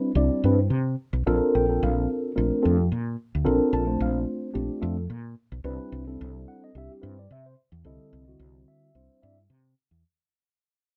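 A mellow tine electric piano opens this short cut from a longer electric jazz fusion piece, its clean, up-front tone colored by a phaser as it carries the accompaniment from 0.0 s. The chords move from Cmaj9 to Bbmaj9 and back to Cmaj9 at 5.7 s, giving the passage a slick, soaring mood over a light sixteenth-note swing in 4/4. A woody fretless electric bass enters at 0.2 s and sits just beneath the keys, its round, hollow-bodied voice dark and direct in the mix. A moderate club reverb places both instruments in a club-like space. The whole clip is a fade-out, with the electric piano dropping away at 9.4 s as the bass carries on to the end.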